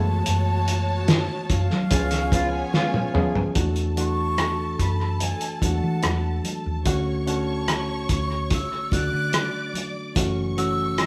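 This smooth, bittersweet slice of lush 1970s-style soul opens with a breathy jazz flute carrying the melody over an F#m11 chord, its soft attack and vibrato colored by a slapback echo, while bowed symphonic strings trace a woody, close second line beneath. A barky, reedy electric piano, lightly overdriven through its built-in speakers, holds down the accompaniment, and a round, dark hollow-body bass anchors the low end at a relaxed 73 BPM in straight 4/4. A distant, roomy horn section adds pop-style stabs that end by 3.3 seconds. Up front, a cloth-damped drum kit with a fat snare and tight kick sounds muffled and gritty with a rolled-off top, joined by very quiet, bright congas. A twangy, slightly broken-up electric guitar riff slips in at 2.1 seconds, and a drum fill then leads into a new section where the harmony moves through E9sus4 and Dmaj7. The band plays live together in a stone room with moderate reverb, and this passage is cut from a longer piece.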